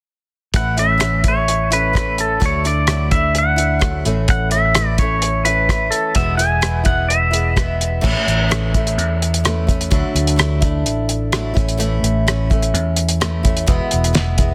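A cloth-damped, thuddy drum kit with a fat snare and dark cymbals, a growly fingered electric bass and a woody, boxy acoustic guitar on old strings start together at 0.5 seconds, setting an open-road, nostalgic folk and heartland rock groove at 128 BPM in A major, moving through A, Dadd9 and E. From 0.6 to 7.8 seconds, an up-front pedal steel guitar carries the melody with a bright, twangy slide tone, volume swells and digital delay. The snare carries a touch of soft clipping, all set in a small, dry-sounding room with a dense, heavily limited modern master in this excerpt from a longer piece.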